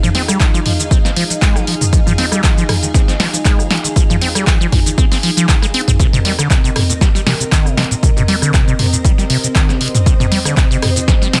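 Gritty and driving, this acid house excerpt runs at 118 BPM in C minor with a light swing on the sixteenths, moving from Fm7 to Cm7 at 6.0 seconds. A squelchy, resonant sawtooth acid bass plays a riff with filter sweeps, phaser and tape echo, while a lush vintage string machine holds slow-attack chords above it, thickened by ensemble chorus and a sub octave and pumping against the sidechain. Up front, a punchy analog drum machine supplies handclaps, hi-hat, rim click, shaker, snare and toms with a short room on the snare, clap and hats, and an electronic kick enters at 0.4 seconds, all sitting in light reverb under a dense, heavily limited modern master.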